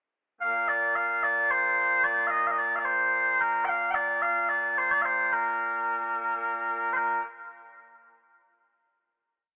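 In a straight 6/8 at 73 dotted-quarter beats per minute, this proud, ceremonial piece of Scottish traditional pipe music in Bb major sets a mellow, sweet small bagpipe alone and up front, spinning a continuous, ornamented modal melody with vibrato from 0.4 to 7.2 seconds before a final note rings into a lush hall reverb, all heard through a rough home-demo mix with a thin, telephone-like sound.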